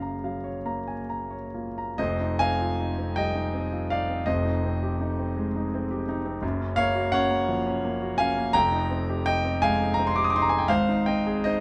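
Classical solo piano in an impressionist vein, this short excerpt cut from a longer piece carries a nocturnal, mysterious mood in a 6/8 shaped by free rubato. A concert grand carries everything alone across the full 11.6 seconds, ranging from deep bass notes down at F1 up to Eb6. Its tone is intimate and smooth with a vintage character, placed up front so that the noise of the instrument's action can be heard beneath the notes. The harmony drifts through lush extended chords, opening on Gbmaj7 and moving through Fm9 and Abmaj7/F before returning to Gbmaj7, then passing through Fm11 to settle on a plain Ab near the end. A brief opening idea gives way at 2.0 seconds to a longer second section, all wrapped in a light reverb that keeps the sound close.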